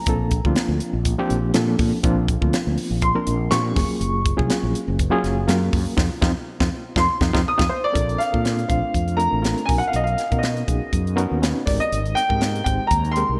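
A bright, 1980s-style digital production places this short cut from a longer electric jazz fusion piece in a lush hall reverb, giving it a slick, soaring mood. At 122 BPM in 4/4 with a light 16th-note swing, it sits in Bb major and is tuned slightly flat to A4 = 436 Hz. A present grand piano with long sustain and a subtle chorus carries the melody high in its range, taking a solo over the opening 8.0 seconds. Beneath it, a reedy, barky electric piano, overdriven and gritty through a combo amp with medium tremolo, supplies the accompaniment, while a round fretless bass with its own subtle chorus anchors the low end. An airy, polished drum kit with a high-tuned snare and tight kick sits up front, and the band hits an accent from 6.0 seconds before a drum fill leads into the second section at 8.0 seconds. The harmony moves through lush major-ninth chords such as Bbmaj9, Gbmaj9, Bmaj9 and Abmaj9, with a bare F5 marking the accent.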